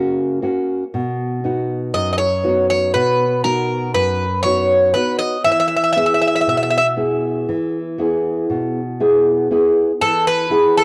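A home cassette recording with a moderate spring reverb gives this short cut of peaceful Greek folk in 9/8 a homely, slightly worn sheen. A thumb-plucked nylon-string guitar opens alone, its fresh strings warm and classical, with some finger squeak, carrying the accompaniment through F#, B and E chords. At 1.9 seconds the bouzouki enters up front with the melody, its picked double strings bright and metallic, some of them ringing in octaves.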